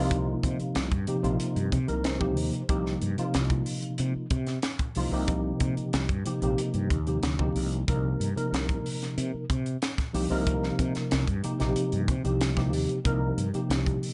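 A worn, slightly out-of-tune tine electric piano with ensemble chorus opens on a Cm11 chord alongside a dark, round fretless bass, and a crisp, airy fusion drum kit with a high-tuned snare and tight kick joins at 0.1 s to set a funky, slick electric jazz fusion groove in C minor at 93 BPM in straight 4/4, with the up-front piano slipping in a short fill at 1.7 s, all under light reverb and a soft, rolled-off top end in this fragment cut from a longer piece.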